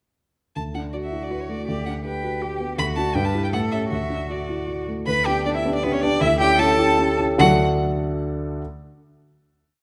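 A brisk, spirited classical-period movement for piano trio in triple time opens at 0.6 seconds with the grand piano and violin together, the cello joining a moment later at 0.9 seconds. The violin carries the melody up front, its tone rich and focused with vibrato and a smooth top. The cello plays a second line beneath it, an even, closely heard counter-melody that also doubles the tune at the octave. The grand piano supplies accompaniment in rocking broken chords and repeated chords, its sound dark, mellow and intimate, with a vintage character and audible action noise. Toward the end of the opening section the music begins to slow, easing through the coda, and this short, complete piece closes on a final chord held by the piano until 8.6 seconds, all set in a moderate recital hall reverb.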